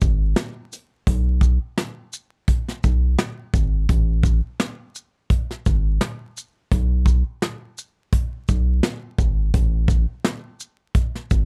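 This boom-bap hip-hop excerpt moves at 85 BPM in 4/4, with a 58% swing on the sixteenths that gives it a soulful, warm lean. A round analog bass sits low between G#1 and B1 from start to finish. Its deep, dark tone blends square, sine and triangle waves with a wave-folded edge, a fast attack and a sustained body. Alongside it for the full 11.5 seconds, a soft acoustic drum kit played with brushes carries hi-hat, shaker, rim click, a medium-tuned snare and a punchy kick, all captured in a small room. Both parts sit up front in a dry mix with little reverb, tuned to A4 = 442 Hz, and a layer of vinyl crackle runs underneath.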